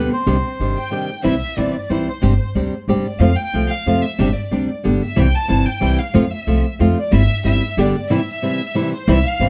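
Tango in C major at 184 BPM in a rubato 3/4, sultry and tense, this short cut opens with a reedy, dark bandoneon line that lasts only to 0.9 s, over a woody pizzicato upright bass and an up-front fingerpicked flamenco guitar whose finger squeaks are audible. From 1.3 s the bowed chamber violin section takes a solo, intimate and close, played sul tasto with soft attack and light vibrato, moving through changes such as C, Gsus4 and F before a break at 8.1 s. Light reverb gives the ensemble a gentle sense of space.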